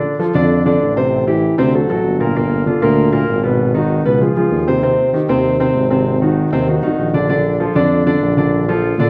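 A punchy, present tuba carries the bass line in a sunny, lively Afro-Cuban jazz passage at 195 BPM in Bb major, with an up-front baby grand piano of warm, natural tone and long sustain comping through colorful changes from a rootless Bbmaj9 to a closing Bbmaj7, all bathed in the reverb of a recital hall in this brief cut from a longer piece.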